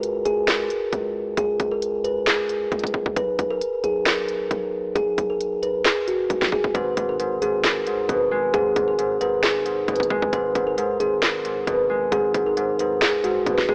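This trap-style hip hop excerpt carries an eerie, menacing mood over a half-time feel. A hard-hitting electronic drum kit sits up front, with a clipped kick, sharp snare, crisp hi-hats and handclaps that have a tape-warm edge. Underneath, a deep 808-style bass with a sine-like tone hits with a fast attack and rings out long before decaying. From 0.3 seconds a woody kalimba carries the melody, its thumb-plucked notes ringing with a boxy, filtered tone close to the listener. At 6.7 seconds an acoustic concert harp joins with fingerpicked, warm accompaniment that is also filtered and placed up front. The whole mix is heard through a lo-fi AM-radio character, with light reverb and a small-room ambience.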